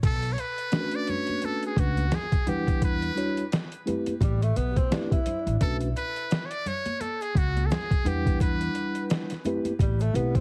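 Swung sixteenths drive this smoky, nocturnal jazz-hop excerpt, where a gritty, pitched-down, tape-warm boom bap kit with a thumpy kick and medium-tuned snare sits up front over woody pizzicato upright bass and bright tube shaker and congas in the background, while a buzzy, brilliant metal-muted trumpet carries the melody through analog delay above a mellow, clean tine electric piano, and a whispered, intimate tenor saxophone slips in at 4.2 seconds and again at 9.8 seconds with plate reverb, the mix carrying a heavily compressed radio sound and vinyl crackle.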